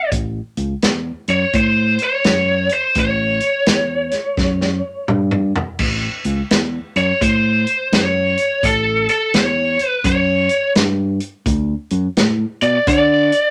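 A swung shuffle in four gives this electric blues a rollicking, laid-back feel, driven by a natural-sounding acoustic drum kit with a punchy kick, medium-tuned snare, hi-hat, crash and toms, which plays a fill from 4.4 to 5.8 seconds. A round, dark fingered electric bass sits up front beneath a picked lead guitar melody pushed through a small cranked amp for a warm overdriven tone. The harmony rests on A7 before moving to D5 at 11.5 seconds, all set in a modest small-room ambience in this passage cut from a longer piece.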